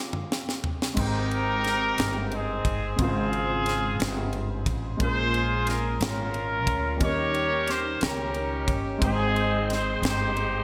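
In 6/8, this reverent, hopeful slow gospel piece opens with a brief clean electric guitar note with delay over a fill from a tight, dry funk drum kit with gated reverb and a high-tuned snare; around 1 second a concert grand piano with long sustain and ensemble chorus, a woody pizzicato upright bass, and an up-front, vintage jazz-style horn section with light vibrato and delay carrying the melody come in, and at 9.0 seconds a smooth tonewheel organ on slow rotary speaker adds sustained chords in the background, within a small room's light reverb and a bright 1980s-style digital production.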